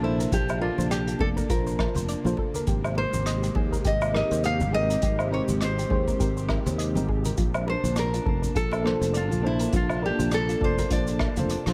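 A relaxed 102 BPM groove in 4/4 with a light 16th-note swing carries this smooth sunset chillout excerpt over Bbmaj9 and Abmaj9 chords, where an up-front, fingerpicked nylon-string guitar with finger squeak and digital delay takes the melody above a growly, punchy fretless bass, a warbling vintage FM electric piano with chorus, tremolo and delay, an airy, breathy pad, and a soft, round arpeggiated pluck, while brushes on a small-room jazz kit with hi-hat, rim click, shaker and woodblock enter at 0.2 seconds and a deep, tape-warm electronic kick and very quiet, close congas and bongos join at 0.3 seconds, all set in light studio reverb.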